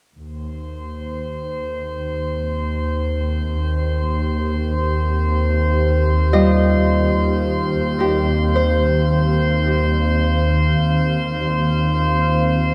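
Ambient music in free time and Eb major, tuned to A4 = 435 Hz, this weightless, warm excerpt rests on a single Eb69 chord throughout. A rich, smooth bowed double bass section holds a low Eb2 up front from 0.2 seconds, with light vibrato and an even tone. From 0.7 seconds a calm, sine-like glass-harmonics texture drifts in high above, its overtones blurred by chorus, shimmer and built-in reverb. A dark, ethereal FM pad fades in with slow attack and long release at 1.8 seconds, sustaining chords thickened by ensemble chorus. At 6.3 seconds a fingerpicked Celtic harp adds ringing acoustic arpeggios, trailed by tape echo and shimmer reverb, all set in a wet concert hall with a 2.1-second decay.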